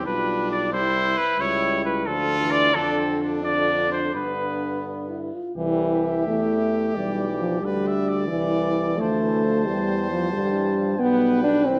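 Stately and triumphant, this classical brass quintet passage moves in a lilting 6/8 with uneven beats, cut from a longer piece. A mellow, vintage-toned trumpet carries the melody up front, joined by a second trumpet whose bright voice and light vibrato trace a lower second line. Up front as well, a dark French horn fills out the accompaniment, while a mellow, close-miked trombone sits in the background beneath it. A distant, roomy bass trombone anchors the low end, and all five voices play together from 0.0 to 11.8 seconds. The harmony opens on G7/B and passes through C#m7b5 and Dm before the second section begins at 5.6 seconds, and the whole ensemble sits in a recital hall reverb that lends the sound a generous glow.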